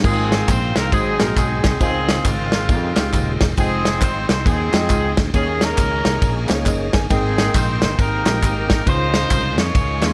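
Reverent yet jubilant, this short uptempo gospel passage swings along on a punchy, up-front country drum kit and a dark, round fingered electric bass, with tambourine and handclaps tucked into the background. A clear, vintage horn section carries the melody with light vibrato, while a worn, slightly out-of-tune tine electric piano adds lightly overdriven accompaniment and a brief fill at 6.4 seconds. Underneath sits a very quiet, bright tonewheel organ holding shouting sustained chords through a slow rotary speaker, all in a light reverb.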